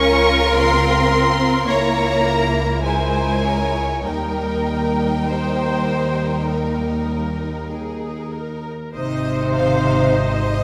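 Tender and serene, this slow romantic movement for string orchestra in Ab major drifts with rubato at 48-57 BPM in 4/4, cut from a longer piece. Lush, distant first violins carry the melody over a clear, focused second violin line and rich violas, while smooth cellos and up-front double basses with light vibrato anchor the bass. The harmony moves from Bbm/Db through Eb before settling on Ab at 8.9 seconds, all bathed in a moderate scoring-stage reverb.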